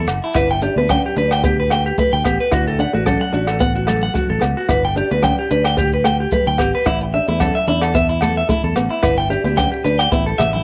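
A lightly swung sixteenth-note groove in 4/4 drives this danceable highlife guitar band excerpt, with a brushed jazz kit giving a boomy kick, hi-hat and rim click, ringing agogo bells set in the background, grainy close maracas, and very quiet, bright congas joining at 0.4 s. Up front, a twangy, clean electric guitar plays arpeggios through tape echo, over a fingerpicked acoustic archtop guitar's warm accompaniment and a round, dark fingered electric bass. The chords move between G, D and A5 in a light, small-room ambience.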